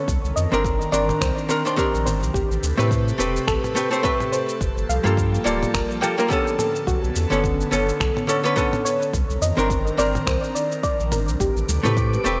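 A loose swing on the sixteenths gives this sunset chillout excerpt its easy 4/4 sway, carried by an overdriven electronic kick with a deep, layered thump and a dusty, compressed sampler-style soul kit of finger snaps, shaker and toms. Beneath them a round sine sub bass, warmed by tube saturation, sustains the low end, while a dark, clean hollow-body archtop guitar sits up front with picked, compressed accompaniment trailed by delay. An airy, breathy pad holds slow-attack chords through chorus and phaser, and a soft pluck spins arpeggios with analog chorus, delay and vintage 12-bit grit until 11.7 seconds. The harmony drifts through Cm9, Am9, Gm9 and Bm9, keeping the mood smooth and relaxed. Near the close, very quiet damped congas enter at 11.4 seconds and a mellow wind-like noise texture drifts in at 11.5 seconds in the background, with the mix set in a light reverb.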